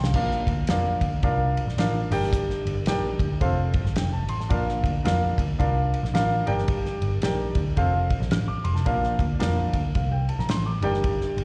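A dark, woody upright piano with slapback echo, a round, foam-muted picked electric bass and a gritty, cloth-damped, thuddy drum kit with a fat snare, tight kick and dark cymbals open this joyful 1960s-style soul excerpt at 110 BPM with a swung 4/4 feel, cycling through Bb, Gm and F as it sounds like a live gig heard through the venue's PA in a recital hall's reverb.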